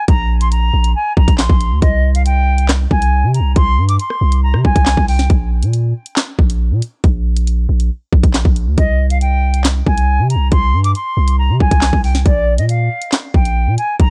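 A half-time drill beat at 138 BPM in C minor drives this tense, cold hip hop excerpt: up-front electronic drums with a hard-clipped kick, sharp snare, bright hi-hats, handclaps and rim clicks carry a gritty 12-bit sampler texture, while a deep, sine-like 808 bass with a fast attack and mellow decay sustains long notes underneath. Over this, a distant silver concert flute plays an expressive melody with vibrato and a crisp attack, its pure metallic tone softened by a low-pass filter. The flute drops out at 5.3 seconds and returns at 8.8 seconds, all set in a dark, dry production.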